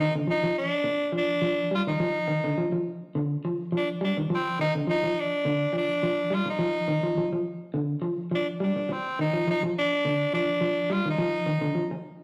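A rough rehearsal-room recording with warm saturation sits inside a wet stone room, its 1.2-second reverb lending the short cut from a longer piece a raw, enclosed feel. This is driving, intense afrobeat at 104 BPM in 4/4, with a lightly swung sixteenth-note feel and tuning set slightly low at A4 = 436 Hz. Up front, a raspy tenor saxophone carries the melody as an edgy, gritty, forceful solo in a punchy pop style, staying in a compact middle register. Beside it, an electric guitar at the edge of break-up plays dark, fingered arpeggios lower down, its slightly broken-up tone shimmering through harmonic tremolo. The harmony moves from Dm and Dm7 to Ebsus2 and Cmadd11/Eb, each chord giving way to passages where the harmony goes unstated, and both parts play throughout until 11.9 seconds.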